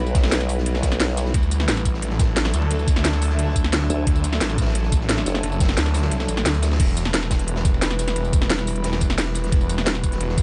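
A straight 4/4 pulse at 176 BPM drives this dark, technical drum and bass in E minor, its mood mechanical and futuristic, and it is cut from a longer piece. An electronic kick, layered and knocking with a small-room character, anchors the beat beneath an up-front drum and bass kit of cracking snare, crisp hats, crash cymbal and tambourine, tinged with tape saturation. Further back, a gritty acoustic breakbeat kit adds a medium-tuned snare and dark ride cymbal with a rolled-off top. In short bursts, a formant-sweep wobble bass with chorus takes the low end, and a snarling, detuned saw bass, distorted, overdriven and pumping against the kick, growls in at 1.3 s as the harmony shifts from Em to D. Behind them, an eerie, warbling FM drone with a metallic, inharmonic edge sustains chords through chorus and reverb, while a blurred, evolving granular pad drifts alongside until the kick, having dropped out at 6.1 s, returns at 6.8 s. 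The mix is dry, with a dark top end.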